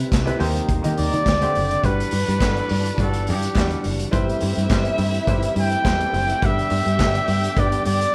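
Glamorous and joyful, this disco excerpt sets a clear baby grand piano, a fat, lightly overdriven tonewheel organ with chorus vibrato and slow rotary speaker in the background, a bright fingered electric bass and a punchy, up-front vintage drum kit with handclaps in a pumping room. A vibrato-laden pop-style flugelhorn takes the melody at 1.0 s, dark, woody bowed strings drift in distantly at 1.8 s, and very quiet, crisp group handclaps join at 2.4 s, with the band heard playing live in one room through a large studio reverb and vinyl crackle.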